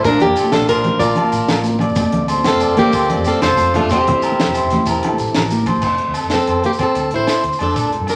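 Rolling in a straight 12/8, this joyful, sunny highlife cut from a longer piece rides on a tight funk kit with a high-tuned snare, a round, punchy dub bass, ringing high-tuned congas that drop out at 5.7 s, and saturated agogo bells and grainy maracas in the background. Up front, a boxy, picked swing-style acoustic guitar carries the melody, while a bright, forceful alto saxophone with vibrato adds a jazzy second line until 5.5 s. A twangy, slightly broken-up electric guitar with spring reverb picks arpeggios, a very quiet flamenco guitar fingerpicks the accompaniment with finger squeak, and the band sits in a large studio reverb under vinyl crackle as the chords move from Bbmaj7 through F and C/E back to F at 5.8 s.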